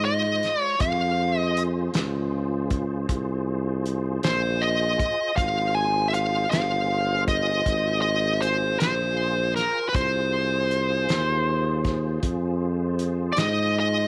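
Slow blues in 12/8 at 52 BPM in F minor, this mournful, soulful excerpt sits on a single Fm chord with a straight feel. A bright, overdriven electric guitar, picked and up front, carries the melody across the full 14.1 seconds, ranging from Bb4 to Ab5. Beneath it, a breathy tuba plays the bass line with light vibrato and scooped notes, present and jazz-styled in its phrasing. A tonewheel organ holds sustained chords quietly in the background, its clean, clear tone colored by key click, chorus vibrato and a slow rotary speaker. A soul drum kit with a fat snare, tight kick and hi-hat comes in at 0.4 seconds and stops at 13.6 seconds, its acoustic small-room sound mid-forward with a rolled-off top. Light studio reverb gives the whole a modest sense of space.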